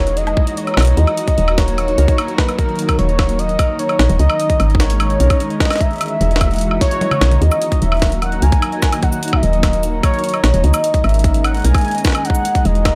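A dry, gritty hardware recording with little room sound carries this cerebral, intricate IDM piece, cut from a longer work, where a velvety, detuned synth lead with vibrato, chorus, tape echo and shimmer reverb sings the melody over silky, evolving string-machine chords and a fingerpicked, ringing concert harp playing arpeggios. Up front, a woody, round FM bass with tube saturation anchors the low end beside a tight electronic kick. A compressed, pitched-up jungle sampler-style kit of cabasa, hi-hat, snare, toms and woodblock adds detail, breaking into a drum fill from 6.8 to 7.4 seconds.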